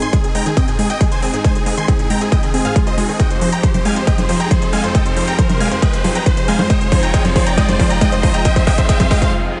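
This driving, euphoric uplifting trance excerpt opens with a huge, detuned supersaw lead carrying the melody, a soft-attack filtered supersaw swell holding sustained chords in the background, and a round, bright analog pluck playing arpeggios with chorus. All three of these synth parts pump against the sidechain, and the lead and pluck also trail dub echo. Up front sits a punchy, overdriven electronic kick, together with crisp, overdriven hi-hats and congas, while a funky, plucky analog bass sits very quiet underneath. The passage is a build-up: a filter sweep works on the pluck throughout, a riser enters in the background at 0.3 s, and a drum fill begins at 3.2 s as the harmony moves from Ab to Fm7. At 9.3 s the music breaks on a reverse cymbal, all set in light reverb and digital ambience.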